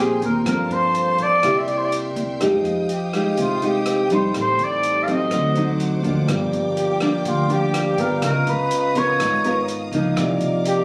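A warm flugelhorn carries the melody up front in this wistful, intimate bossa nova fragment, its soft attack and vibrato giving the line a roomy, slightly distant glow. A fingerpicked nylon-string guitar sits up front beside it, dark and classical in tone, with audible finger squeak. A vibraphone struck with medium hard mallets adds metallic, ringing accompaniment with a slow motor vibrato, while a rich violin section holds smooth, bowed sustained chords. A pizzicato upright bass with gut strings gives a woody, thumpy foundation, and from 0.2 seconds an open jazz drum kit joins with hi-hat, rim click and a boomy kick, rolled off at the top. The harmony moves through lush extended chords from Gm11 to Cm11, and the whole sounds as if caught on a phone in a club, with moderate reverb and the murmur of the room around it.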